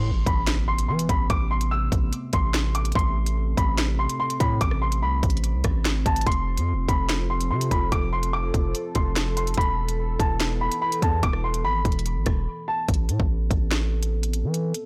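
A half-time drill groove at 145 BPM drives this cold, dark hip hop excerpt in A minor: an up-front electronic drum kit with a hard-clipped kick, sharp snare, crisp hi-hats, rim clicks and finger snaps sits over a punchy, heavy 808-style bass with a fast attack and decaying sine tone. A very quiet electronic impact opens the piece in its first 1.3 seconds, and a mellow, boxy concert grand carries the high melody through tape echo until 12.8 seconds, while a moody sawtooth-and-triangle analog pad with a sub octave holds slow-attack chords, treated with chorus and phaser. The chords move from Amadd9 to F and Esus4, and after a short break the music returns to Amadd9, all within a blown-out, overdriven recording.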